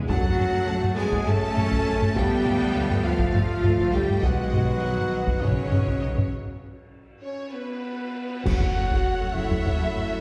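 Hard-stick taiko drums, close and dry, drive this heroic, dark orchestral film cue in a restless 7/8 at 202 BPM counted in eighths, set in F# dorian over chords moving from F#m through Dm to B before a break and a drum fill lead into a band accent back on F#m. A mellow, distant French horn section carries roomy sustained chords, joined by a mellow trombone section with light vibrato and a smooth-topped woodwind section. The strings play throughout: a soft-attacked, expressive violin section sings the melody in the background while a second, bright and intense violin section plays a lush line alongside it, clear violas supply accompaniment, and a rich, focused cello section and clear double basses hold the bass. Very quiet calf-head timpani sound only at the opening, while a cymbal swell, dark clash cymbals and concert bass drum enter at 4.2 seconds. At 7.2 seconds a pure, crisp-attacked small flute group adds a distant second line. 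The whole ensemble sits back in a wet scoring-stage reverb, giving the excerpt a grand, spacious sound.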